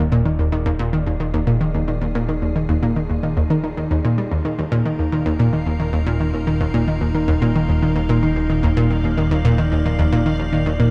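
Cosmic and expansive, this short slice of sequencer-driven space music sets a round, bright analog pluck riff with chorus and tape echo up front over a fat, saturated analog bass, while an evolving, morphing wavetable pad and a mellow, resonant bubbling stepped-filter texture fade in behind them across the full 10.9 seconds on a single Ebsus2 chord, all within a lightly reverberant, echo-heavy mix.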